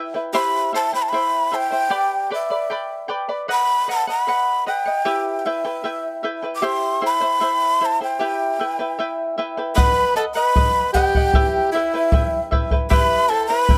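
Melancholic and earthy, this Andean folk excerpt in E minor moves at a straight 76 BPM in 2/4, with a fingerpicked, shimmering charango on double strings opening at 0.0 seconds and a breathy, mellow large quena carrying the melody from 0.3 seconds, its wooden tone marked by chiff, vibrato and an unsteady quality. At 9.8 seconds a soprano saxophone joins with a classical-style second line and light vibrato, while a deep, dark bombo adds percussion. The close, detailed recording has little reverb, keeping the quena and charango up front over chords that move through C, G, B and Em.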